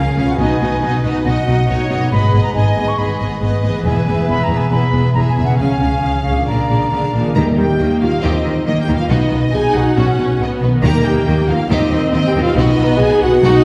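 A mellow French horn section takes center stage at 7.4 seconds, holding loose, sustained chords with light vibrato that crown this triumphant, soaring cut from a heroic adventure film score in B major, moving in a straight 4/4 at 138 BPM. Before the horns arrive, a pure, straight-toned concert flute carries a tongued second line high above the orchestra until 7.1 seconds. Two bowed violin sections share the upper strings: a smooth, even section carries the melody while a lush, focused section adds a second line. A viola section fills the middle with accompaniment, and a very quiet, ringing concert harp plays bright fingerpicked arpeggios. The bass comes from a rich cello section set in the background and an expressive chamber double bass section, with a very quiet, close and dry timpani marking a few moments with medium mallets. The chords travel from B through G#m, E and C# to A#7, then alternate between Eb and B, and the whole ensemble is heard from further back in a wet concert hall.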